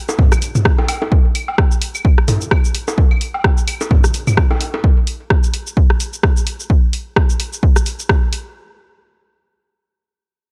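A dry, gritty hardware recording with digital ambience carries this hypnotic, clinical techno excerpt at 129 BPM in 4/4 with 57% swing on the 16ths, where a punchy analog kick sits up front beside an analog drum machine's cabasa, hi-hat and rim click, while electronic bongos, toms, claves and woodblock, re-recorded in a large room, play until 4.8 seconds.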